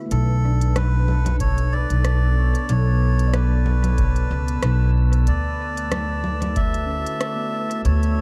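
A dark, spacious mix opens this excerpt of deep ambient dub with a lightly swung feel, where a warbling, lo-fi tape-like pad holds detuned, chorused chords beneath a pizzicato upright bass that sits woody, thumpy and up front with tube saturation. A reedy, breathy melodica carries the melody close and full, while a ringing steel handpan plays bright arpeggios in the background and a glassy, drifting harmonics texture hovers softly from 0.9 seconds, with dub echo trailing the melodica, handpan and drums. An organic electronic kit of congas, crisp hi-hat and rim click sits in a roomy space, a dry, deep electronic kick joins from 1.4 to 6.7 seconds, and the harmony moves from Bm7 to Dmaj9 at 5.3 seconds.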